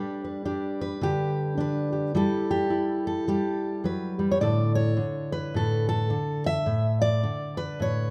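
Folk fingerstyle in A mixolydian, this short excerpt features a single fingerpicked steel-string acoustic guitar playing alone from 0.0 to 8.1 seconds. The mood is warm and gentle, moving at 106 BPM in 4/4 with a lilting swing on the eighth notes. The dreadnought guitar sits up front, its tone dark and full-bodied, spanning from A2 up to E5. The harmony moves from G to Em/G at 2.2 seconds and settles on Asus4 at 4.4 seconds, leaving the phrase suspended as the clip ends. A large studio reverb with a 1.3-second decay surrounds the instrument, lending the performance a spacious, wet glow.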